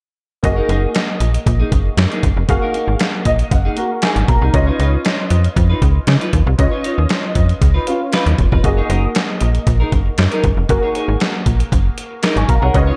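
Feel-good and danceable, this early-eighties boogie funk excerpt moves at 117 BPM in a straight 4/4, set in F# major. A snappy, slap-like FM bass with a metallic, fast attack sits up front, joined by a detuned 8-bit digital drum machine whose thumpy kick, medium-tuned snare, hi-hat and handclaps carry a sampler-style, tape-warm character from being re-recorded in a large room. A clean electric guitar plays a bright, twangy picked riff through a lush chorus, while a polished grand piano supplies accompaniment with an ensemble chorus and steps forward with a fill from 3.0 to 4.5 seconds. The harmony shifts from F#69 to C#9 at 4.5 seconds and back to F#69 at 8.6 seconds. A moderate plate reverb and digital ambience give the whole a dreamy, reverb-soaked mix.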